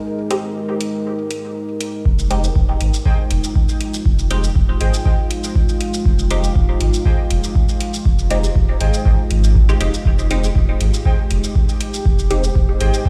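A steady 120 BPM pulse in 4/4 with a light 16th-note swing drives this hypnotic, nocturnal dub techno excerpt in F minor, resting on an Fm7 chord. The opening break leaves a deep, moody ambient pad of slow-attack, detuned saw and sine layers with chorus, built-in reverb and vintage 12-bit sampler grit, joined by a muted, nasal filtered chord stab treated with phaser and dub echo, and metallic electronic hi-hats and shaker. At 2.1 seconds a tape-warm deep kick and a round, soft sub bass arrive up front, anchoring the groove while the pad, stab and bass pump against the sidechain. From 3.1 seconds a warbling, nostalgic lo-fi synth keys riff of detuned triangle and saw tones with a filter sweep floats quietly in a higher register through chorus and dub echo. The whole piece sits in a stone-room reverb that evokes a big sound system playing in a bare space.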